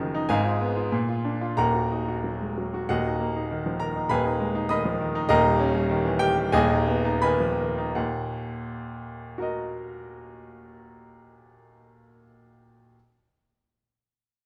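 In a pliant, rubato two-beat metre, this passionate, agitated classical piano study sets a solo baby grand ranging from the deep bass to the high treble, its natural, short-sustained tone sitting up front. The playing slows down between 4.7 and 8.0 seconds as the harmony moves from a diminished chord through dominant sevenths back to the home minor chord, all bathed in the lush reverb of a recital hall. This is an excerpt cut from a longer piece.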